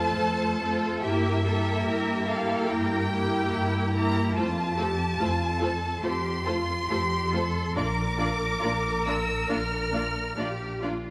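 Classical slow romantic string orchestra music, lyrical and rubato, in which a clear, up-front violin section sings the melody over a second, more distant violin line, intense bowed violas, focused cellos with a smooth top and expressive, up-front double basses, all with vibrato, set in a wet concert-hall reverb with vinyl crackle.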